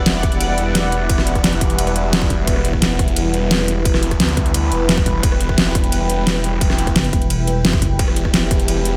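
A straight 4/4 pulse at 174 BPM drives this dark, aggressive slice of technical drum and bass in E minor, where an overdriven, punchy electronic kick and an up-front dubstep kit with a deep snare, metallic hats, ride cymbal and rim click hold a mechanical groove over a single Em chord. Beneath them a snarling, growling saw bass with a moving notch sits up front, while a bright, resonant pad with filter swell, chorus and 12-bit sampler grit and a deep, moody ambient pad with ring modulation and built-in reverb both pump against the beat. From 7.0 to 8.0 s a heavy, saturated pluck wobble bass pulses in, all set in light digital ambience.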